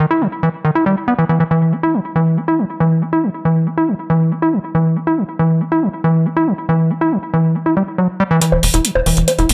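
An overdriven acid bass opens this psychedelic trance excerpt on its own, playing a squelchy, gritty square-wave riff over an E5 chord in E harmonic minor, with a resonant filter sweep, saturation and a digital delay. The tempo is 139 BPM in a straight 4/4, the tuning sits slightly below standard, and the mood is alien and hypnotic within a light reverb. At 8.4 seconds a build-up begins as electronic hi-hats and bongos enter, layered and up front, the metallic hats and percussion dulled by low-pass filtering and given a small-room character. A moment later, at 8.5 seconds, a tight sequencer bass joins on a low E, punchy and driving, blending sawtooth and square waves with a plucked filter and a moving notch. The acid riff carries on alongside these new parts until the excerpt cuts off mid-build.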